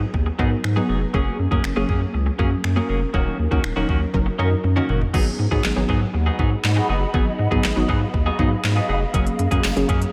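A detuned sawtooth pluck and a thick, saturated sine sub bass, both pumping with sidechain, and a clean, hollow-body electric guitar riff drenched in lush chorus open this confident, bittersweet dance-pop fragment in G# dorian at 120 BPM. They are joined at once by an up-front, tape-toned R&B kit of knocking kick, deep snare, snaps and handclaps that rolls through a fill at 4.6 seconds before a cloudy, evolving granular pad blooms in at 6.2 seconds and a faint, jingly tambourine flickers at 9.6 seconds, all within a dreamy cathedral-reverb haze over G#m7, F#add9, D#m7 and F#6 chords.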